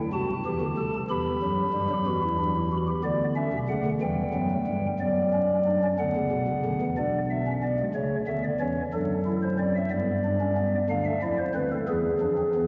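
Moving in a straight 6/8 at 61 BPM, this driving, solemn baroque-style three-part fugue in E minor, tuned to A4 = 444 Hz and cut from a longer piece, is carried by a solo pipe organ on a soft, hollow stopped-flute stop with chiff, sitting up front across a range from B1 to B5. A wet cathedral reverb with a 4.8-second tail surrounds it, faint vinyl crackle runs beneath, and the recording carries nothing above 7.8 kHz. At 7.0 s the harmony turns from E minor toward E7 and G before arriving on E7 at 11.9 s, and the excerpt ends at 12.7 s.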